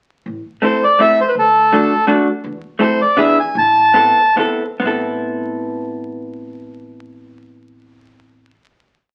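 A swung 3/4 pulse between 126 and 167 BPM drives this short, whirling and bittersweet musette waltz in A minor. A pizzicato upright bass, woody and growly, marks root and fifth on the main beats, while a clean, compressed hollow-body electric jazz guitar plays close-voiced backbeat chords up front and a reedy, smooth bandoneon sings a motif-based melody in sentence-like phrases until 4.4 seconds. The tune slows from 2.4 seconds into a final Amadd9 chord held from 4.8 seconds, all heard through wet club reverb and the crackle of a very old 78 rpm record.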